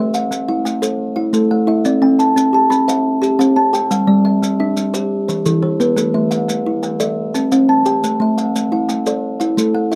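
Two kalimbas open this hypnotic southern African traditional excerpt in A equiheptatonic at 117 BPM in 12/8, weaving an mbira-style interlocking cycle of thumb-plucked arpeggios over Am, C, G5 and Em, the up-front solid-board instrument mellow and ringing, the other hollow-boxed, short and woody, while grainy maracas join at 0.1 s and light reverb surrounds the whole.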